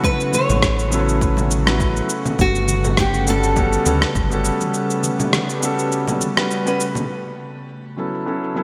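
A bright, 1980s-style digital production steeped in lush hall reverb frames this blissful, relaxed sunset chillout excerpt at 102 BPM with a light 16th-note swing, where a fingerpicked classical nylon-string guitar carries the melody through subtle chorus, delay and shimmer reverb over an open, long-sustaining grand piano, a thick, warbling detuned unison pad, gritty overdriven electronic cabasa and rim click up front, a punchy layered electronic kick that drops out at 4.3 seconds, vintage congas in the background and a deep, round analog bass, before a break at 4.7 seconds and filter sweeps on the drums and piano from 7.1 seconds as the harmony moves from A69 to Gmaj9#11 and back to A69.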